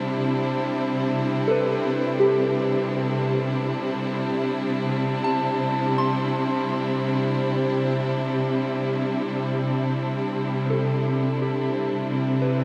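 A bright, intense string section holds sustained chords up front over a tense, detuned bowed-like drone on C3 in the background, while a soft, pure synth bell enters at 1.5 seconds with gentle arpeggios carried by chorus and tape echo, all in a weightless, luminous free-time ambient piece in C major tuned to A4 = 445 Hz, resting on a Cmaj9 chord inside a vast cathedral reverb with a 4.7-second tail.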